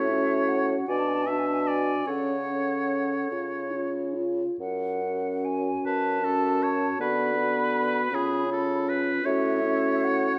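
A rubato lilt in 6/8 carries this slow, elegiac romantic movement for wind quintet, cut from a longer piece and full of yearning. The airy, distant silver concert flute sings the melody with vibrato and a crisp attack above a clear, up-front oboe second line. A dark French horn with a smooth top and a mellow clarinet fill the accompaniment, while the bassoon, close at hand with light vibrato, anchors the bass, all framed by the moderate reverb of a recital hall.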